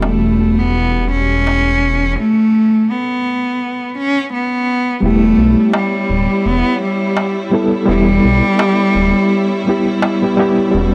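A clear, boxy bowed cello carries a brooding melody through tape echo over a reedy electric piano with fast tremolo and its own tape echo, a rich, intimate string section holding soft sul tasto chords, a deep, rumbling detuned saw bass with tube saturation, a crisp metal-shell darbuka up front and a very quiet, breathy wind-like texture, giving this cinematic trip hop fragment a dry, gritty small-room sound with cassette grain before the cello drops out at 10.0 s.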